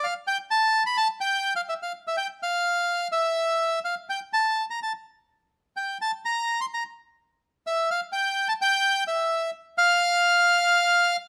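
Dramatic and tense, this brief tango fragment, cut from a longer piece, features a solo bandoneon in a freely rubato feel, its reedy, full, close-miked tone sitting dry and up front in the upper register against a moderate studio reverb.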